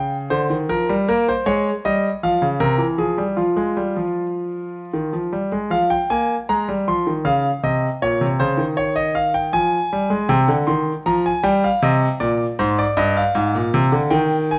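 Close, detailed microphones and a vinyl crackle place a clear concert grand piano up front in a moderate recital hall, its intimate, polished tone carrying audible action noise, deep bass and long sustain as it plays solo through this contemplative, solemn baroque-style two-part invention in 3/4, shifting into a new section at 5.7 seconds within this short cut from a longer piece.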